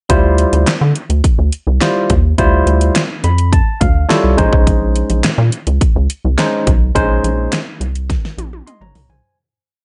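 A straight, mid-tempo boogie beat in 4/4 drives this short, slick, late-night early-eighties boogie funk piece, its punchy electronic drum kit carrying a fat snare layered with handclaps, metallic hi-hats and toms under gated reverb, with a drum fill at 8.1 seconds. Up front, a rubbery, hollow, dark square-wave bass plays a fat syncopated line with muted ghost notes and chromatic approach notes, while a bright, barky tine electric piano pushes drop-2 chords over Dm11 then Bbm11 and slips in a short fill from 3.0 to 4.7 seconds. The mix sits in light digital ambience with a top end that stops around 10.9 kHz and fades out from 7.0 seconds.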